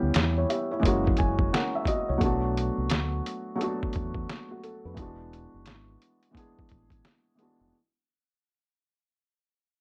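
A soft, felt-muted upright piano with a cassette-tape haze and a round, dark fingered electric bass open this hazy, reflective lo-fi hip hop excerpt at 87 BPM, joined at 0.1 seconds by a pitched-down, overdriven sampler-style drum kit with a thumpy kick and medium-tuned snare, swung sixteenths, and a mellow piano fill from 0.8 to 2.2 seconds over chords moving from C#m7b5 through F#7 and Bm7 to E7, all in a small room as a fade-out runs throughout.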